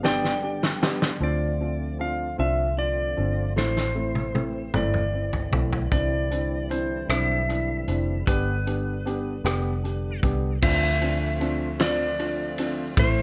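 Romantic and heartfelt, this short cut from a six-eight pop ballad moves at 51 BPM in 6/8, tuned to A4 = 444 Hz. A clean lap steel guitar carries the melody with slide and volume swells through tape echo, while a felt-muted upright piano adds soft, intimate accompaniment. A percussive tonewheel organ sits in the background with key click, chorus vibrato and a slow rotary speaker, and a round, foam-muted vintage electric bass holds the low end. An up-front, gritty indie drum kit with a fat snare, punchy kick and dark cymbals plays fills at 0.0 and 3.6 seconds over a G, Dm7, Am, Cadd9 progression, all in a light reverb with a rolled-off top.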